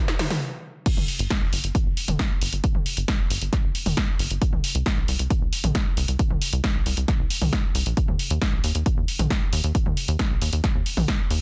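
A punchy analog drum machine opens this euphoric yet bittersweet uplifting trance excerpt with a brief fill and a short stop, then at 0.9 seconds the drop lands with an overdriven, layered electronic kick, joined a moment later by a dark, detuned sawtooth sequencer bass with sidechain pumping, set in a dry, dense and heavily limited modern mix.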